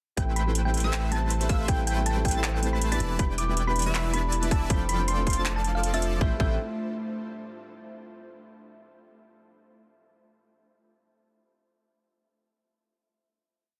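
A lush, dreamy future bass piece in A minor at 159 BPM with a swung half-time feel, where a deep, up-front 808-style bass and an overdriven, hard-clipped kick anchor metallic hat rolls and claps while a fat, nasal detuned polysynth throbs syncopated chord stabs with chorus and delay, a round, warbling thumb-piano-like pluck carries a repeating riff melody through tape-toned chorus and dub echo, a soft felt-muted upright piano with audible action noise plays dotted-rhythm chords, a punchy unison pluck doubles the chords an octave higher in the background, and a very quiet ethereal pad enters at 1.4 seconds, while the other parts pump over Am7, Em7 and F6 in a dense, dry master before a final Am7 chord rings from 6.2 seconds.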